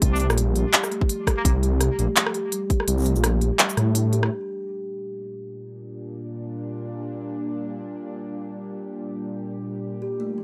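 Half-time drum and bass at 168 BPM in G minor, this tense, spacious passage cut from a longer piece opens on a drop where a rumbling, detuned saw bass sits up front beside a hard-clipped electronic kick and a crisp, layered kit of handclaps, hi-hat, rim click and shaker with a swung sixteenth feel. Woody kalimba arpeggios with tape echo ring through the mix, and a nasal, distant trumpet with a straight mute adds a brief classical-style line between 0.1 and 1.5 seconds, also carrying tape echo. The kick drops out at 2.9 seconds, and the bass, kit and kalimba stop at 4.3 seconds, where the harmony moves from C to G minor. A string-like, wave-folded drone then swells in slowly with vibrato, its own reverb and sidechain pumping, while a filter sweeps across it to the end, and the kalimba returns for a moment just before the close. The overall sound is dry and gritty, with transformer saturation lending a hardware edge.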